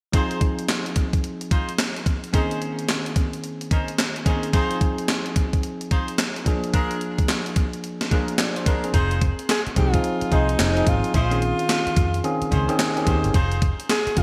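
New jack swing R&B with a punchy, confident strut, built on an up-front gated 80s drum machine with thumpy kick, handclaps, hi-hat and a gated-reverb snare, a bell-like, clean tine electric piano carrying the chords, and tight, distant jazz-style horn stabs trailed by digital delay, before a dark, round, foam-muted fingered electric bass enters at 8.9 seconds and a warm alto saxophone takes the melody with vibrato from 9.5 seconds in this bright, lightly reverberant 1980s-style excerpt.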